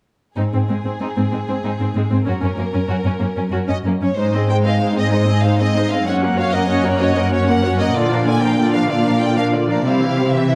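A full string section opens at 0.4 seconds in this short, triumphant and adventurous cinematic cue, moving at 127 BPM in a straight 12/8. The violins carry a lush, vibrato-rich melody between Ab4 and Ab5, with a second violin line and the violas filling in smooth, even bowed harmony beneath. The cellos sit close and up front, anchoring the bass with a warm tone as the chords move from Ab to Gb and back. At 4.2 seconds a dark French horn section enters in the background with sustained chords, deepening the sound as the harmony climbs through Bb to C. A moderate scoring-stage reverb and a dark, warm production give the ensemble a spacious, symphonic sheen.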